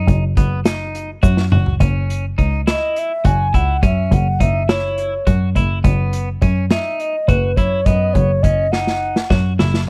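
Progressive instrumental band music in a brooding, tense 7/8 at 208 BPM (eighths), this excerpt sets a bowed, nasal double bass up front beside an acoustic drum kit played with bundle sticks, its punchy kick and medium-tuned snare driving through drum fills at 1.2 and 8.7 seconds, while a twangy, picked clean electric guitar spins quiet arpeggios and a grainy egg shaker sits briefly in the background. At 2.7 seconds a mellow wooden baroque flute enters with a pure, tongued melody touched by vibrato, over chords moving from B/F# to F#5 and back. The sound is a dry, close 1970s-style studio recording.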